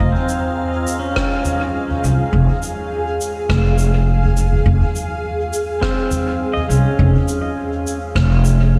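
A lightly swung 4/4 groove from a deep, tape-warm electronic kick in the background and a natural-sounding soft-mallet kit of rim click, shaker and toms with studio reverb and dub echo carries this spacious, meditative ambient dub fragment, where a woody, growly pizzicato upright bass sits up front beneath a blurred, detuned granular cloud pad holding a Db/F chord, while a clean, compressed pedal steel guitar with slide and volume swells plays echoing arpeggios that drop out at 2.3 seconds and return at 5.8 seconds.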